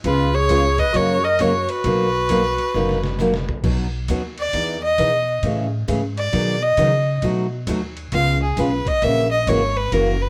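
A swinging, playful western swing excerpt in B major moves at 134 BPM in 4/4, with a 65% swing on the eighth notes and a blend of country and trip hop textures. A bright, full-bodied picked acoustic guitar sits up front with audible finger squeak, while a woody, dark pizzicato upright bass with gut strings thumps underneath. A gritty, compressed sampler-style drum kit, pitched down and re-recorded in a small room, adds a thumpy kick, medium-tuned snare, hi-hat, ride, crash and toms, with a drum fill from 2.7 to 3.6 seconds. A clear, smooth fiddle with light vibrato carries the melody in plate reverb, joined until 3.5 seconds by a raspy, growling clarinet with scooped notes and a vintage jazz flavour. From 3.6 seconds the fiddle takes a solo over a progression moving through B, Emaj7, Amaj7, G#m7/B and dominant chords like B7, C#7 and F#7, all set in a moderate club reverb.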